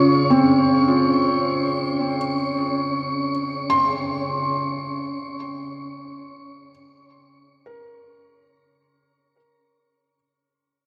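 Peaceful and serene, this ambient excerpt drifts at 53 BPM in 4/4 with a straight feel, resting in Db major on a single Dbmaj7 chord and tuned slightly sharp to A4 = 445 Hz. A felt-muted upright piano sits up front playing soft, intimate arpeggios between C4 and C6, its muted, natural tone carried by delay and shimmer reverb until 10.1 seconds. Beneath it, a calm organ-like drone holds Db3 with a slow attack and long release, thickened by ensemble chorus. An airy, breathy wind-like texture of tuned noise spans Db4 to Db6, adding a mellow, sustained haze lifted by shimmer reverb. The whole is bathed in a lush hall reverb with a 2.6-second decay, while the drone and the overall mix fade out over the passage's 9.4 seconds.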